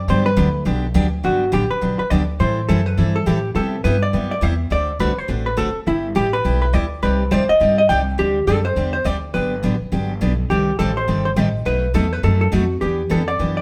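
This is a cheerful, down-home slice of country western swing in G major, cut from a longer piece and moving at a brisk 207 BPM in 4/4 with a lilting swing on the eighth notes. A vintage hollow-body jazz guitar carries the melody with a dark, clean electric tone, picked and sitting up front. It opens with a short solo passage in the first 1.2 seconds before the tune settles into its longer second section. The upright bass thumps along underneath on gut strings, its pizzicato sound woody and close. A picked steel-string acoustic jumbo guitar joins at 0.1 seconds, adding bright, full-bodied accompaniment. The harmony moves through jazzy colours such as Gmaj7, Cmaj9, D9sus4, Cm6 and B7 before landing on Em7. The band sounds as if it is playing live together in a stone room with moderate reverb, tuned slightly sharp at A4 = 443 Hz.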